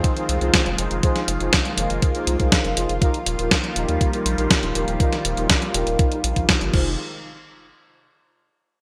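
Bright 1980s-style digital production with moderate plate reverb frames this melodramatic, danceable italo disco excerpt, where a thick, detuned pad with chorus and phaser holds sustained chords and bold, fat synth brass stabs carry a filter sweep and digital delay, all over a thumpy electronic kick, an up-front 12-bit drum machine with a fat, gated snare, hi-hat and crash, and a round, deep analog bass that enters at 0.3 s, before the parts fall away at about 7.0 s.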